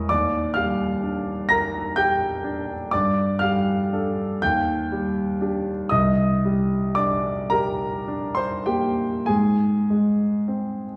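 Serene and dreamy, this brief fragment of impressionist classical solo piano drifts in a slow, rubato 6/8 at 32-44 BPM as a smooth, vintage-toned concert grand with a deep bass ranges from C2 to Bb6, moving through lush chords from Ebmaj9 and Gsus2 to Cm9 before settling on Ab at 9.3 seconds, all bathed in the lingering reverb of a recital hall and heard from further back in the room.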